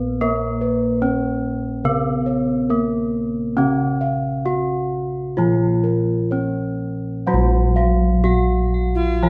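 This Javanese gamelan excerpt in Bb pelog moves at a stately, hypnotic 62-75 BPM in 4/4. Ringing bronze metallophones carry the melody and accompaniment, while round, beating bossed gongs hold the deep bass and add arpeggios from 0.2 s, all set in a moderate stage reverb. A further metallophone arpeggio line enters at 7.3 s, and an airy, reedy tenor recorder with vibrato and a soft chiff appears close and up front at 8.9 s.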